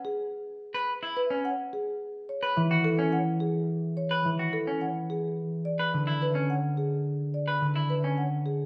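A straight, steady 3/4 pulse at 107 BPM drives this short passage of minimalist classical pattern music, which feels both urgent and meditative. A woody, close-miked marimba, dry and full, carries the melody from the start, joined at 0.7 seconds by clean, picked arpeggios from a bright semi-hollow electric guitar set up front. At 2.6 seconds a concert harp enters low with thumb-plucked, ringing accompaniment, all within a large studio reverb.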